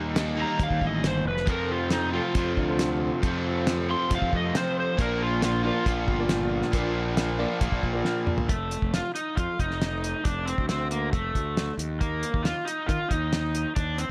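A warm, overdriven slide guitar sits up front, playing a swaggering solo over a confident classic rock groove in F mixolydian at 137 BPM, while a growly, fuzzed fingered bass punches alongside a dry, cloth-damped drum kit with a fat snare and tight kick. Two overdriven guitars, one dark and compressed with spring reverb and a hollow-bodied one in the background, play the riff until 8.5 seconds, and a very quiet vintage grand piano adds accompaniment from 1.5 seconds. A drum fill at 8.1 seconds leads into a new section where the slide guitar, bass and drums carry on in a small, lightly reverberant room.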